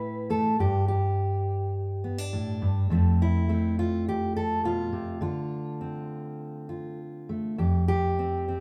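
Folk for a lone fingerpicked steel-string jumbo acoustic guitar, full-bodied and up front, in an intimate, wistful mood at 103 BPM in 4/4 with a straight feel, moving through Am, Gsus2, F and Dm7 before settling on Fsus2 at 7.6 seconds, all bathed in the wet reverb of a large studio room in this short cut from a longer piece.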